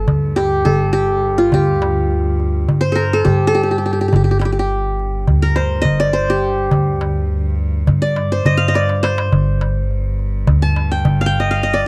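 Turkish makam ensemble music in G makam ussak, moving in 9/8 at 208 beats per minute counted in eighths, with a hypnotic, longing mood in this short cut from a longer piece. The bright-edged, plectrum-plucked qanun carries the melody up front, over a woody pizzicato upright bass, a clear bowed cello holding a drone on G in the background, and a crisp, high metal-shell darbuka that adds a fill from 8.7 to 9.3 seconds. The sound is dry and close, with the intimate feel of a 1970s studio recording.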